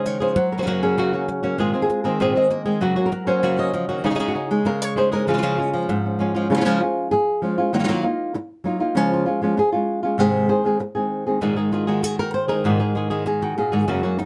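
A close, detailed recording with light reverb puts two acoustic flamenco guitars up front in this short, festive and proud flamenco excerpt in Db major, moving briskly at 195 BPM in a straight 4/4. The lead guitar carries the melody throughout all 14.3 seconds, its thumb-plucked tone warm, with finger squeak audible on the strings as it ranges from Gb2 up to Eb5. A second, brighter fingerpicked guitar adds chordal stabs beneath it, dropping out at 6.5 seconds so the melody stands alone through the middle passage, then returning at 11.4 seconds for the closing stretch. The harmony moves through Gb, Abadd9, Dbsus2 and Db early on, shifts to Ebmadd9 and Ab in the middle, and lands on Absus2 before the excerpt is cut off.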